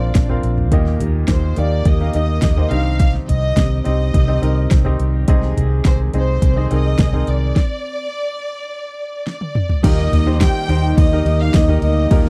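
This uplifting piano-driven pop excerpt opens with a lush, vibrato-rich violin section carrying the melody over a brilliant, woody upright piano with audible action noise, a fingerpicked dreadnought guitar riff in the background, and a round, punchy, foam-muted vintage electric bass up front beside a layered, tape-warm deep house kit with a deep kick, fat snare and metallic hats. The music stops at 7.6 s, and a drum fill from 9.3 s leads into a new section at 9.8 s, where a classical-style French horn section adds a second line in the background and a very quiet, reedy, lightly overdriven tonewheel organ with fast rotary speaker holds sustained chords. The sound is dry and close, in a 1970s studio style.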